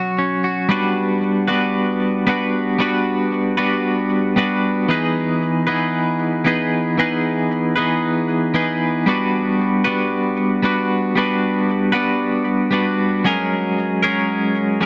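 Rock excerpt at 115 BPM in a straight 4/4, carefree yet wistful, carried entirely by a single twelve-string electric guitar playing alone for its full 14.9 seconds. The clean, picked guitar is bright and twangy, compressed and up front, colored by tremolo and analog delay as it moves through chords such as Gmaj7, Emaj7 and F#add9. A light reverb surrounds it, and the overall sound stays soft at the top, with nothing above 7.9 kHz.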